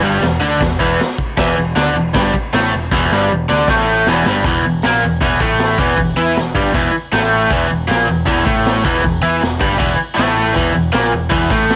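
A bright, double-tracked overdriven electric guitar sits up front with a cassette-tape riff in E minor, pushing this raw, gritty garage rock fragment at 157 BPM over a growling picked bass with its own overdrive and a vintage kit that enters at 0.2 s with a punchy kick, high-tuned snare and dark cymbals, its rolled-off top also carrying the tape character, throwing in a drum fill from 2.9 to 4.4 s before the next section, all captured as a home cassette recording with light reverb.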